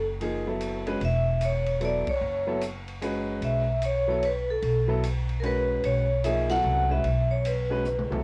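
Modal jazz in a hypnotic, cool swinging 3/4, this short home cassette recording cut from a longer piece features a ringing, close-miked vibraphone melody with medium motor vibrato over woody, thumpy pizzicato upright bass on gut strings, clear grand piano accompaniment with a tape character, and a small-room acoustic drum kit of dark cymbals and boomy kick that also carries tape colouring, with band accents at 2.0 and 6.4 seconds and a drum fill running from 7.9 seconds to the close.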